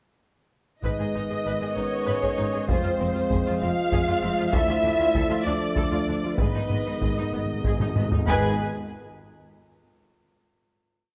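From 0.8 s a dark, heroic orchestral film-score theme in 6/8 opens at once: two lush violin lines double the tune at the octave over a driving viola ostinato, mellow French horns, shadowy trombones and a hollow stopped-flute pipe organ with tremulant hold sustained chords, intense cellos and rich double basses carry the bass, and heavy, saturated taiko drums pound a big ostinato, joined at 6.4 s by round, soft-mallet timpani for a fill before the ensemble settles on a final chord at 8.3 s in a moderate concert-hall reverb.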